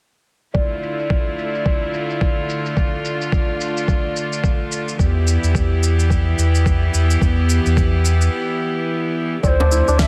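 Meditative and earthy, this organic downtempo excerpt moves at 108 BPM in 4/4 with a swung sixteenth-note feel, set in D dorian. Bright, bowed chamber strings hold sustained chords up front, pumping against a gritty, thumpy sampler-style kick, while a layered electronic shaker and fat, tape-warm snare sit behind a low-pass filter, and a metallic bronze singing bowl rings softly in the background on a high D with slow beating. The harmony moves from Dmadd9 to Em7 at 5.0 seconds, where a round, sine-like sub bass arrives up front. After a break from 8.3 seconds, an airy, distant ney with vibrato and a crisp, fingerpicked kora enter at 9.4 seconds over Dm9, joined briefly by a soft-handed djembe tucked in the background. Light reverb and small room ambience frame the sound.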